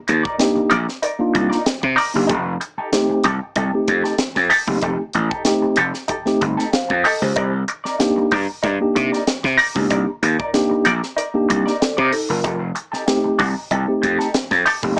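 A funky, sly groove cut from a longer funk piece moves in a straight 4/4 feel over Cm9 and F9 chords, with a gritty, growly slap bass driven by overdrive sitting up front beside a clean, hollow-body electric guitar colored by wah and tremolo. A crisp fusion drum kit with a high-tuned snare and punchy kick keeps time from the start, while a mellow tine electric piano adds stabs from 0.4 seconds. Light reverb and a small-speaker sound give the whole excerpt a compact, close feel.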